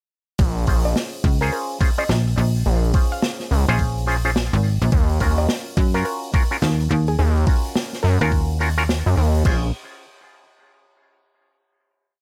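Glitch hop at 106 BPM in Bb minor, funky and swaggering, with a swung sixteenth feel that moves from Bbm7 to Ebm9 through a drop starting at 0.4 seconds before settling on a final Bbm7 chord at 9.5 seconds. A gritty, saturated synth bass and a snappy, metallic FM bass sit up front trading chopped phrases over an overdriven, knocking electronic kick, while an acoustic jazz kit with dark cymbals adds snare, rim clicks, open hat and crash in a swung beat with edits. Above them, a twangy auto-wah clav fires rootless, syncopated chord stabs with 12-bit sampler grit, sidechain pumping and digital delay, and a woody, nasal wave-folded pluck with chorus and delay offers short answering phrases in the background, all in a dry, close sound.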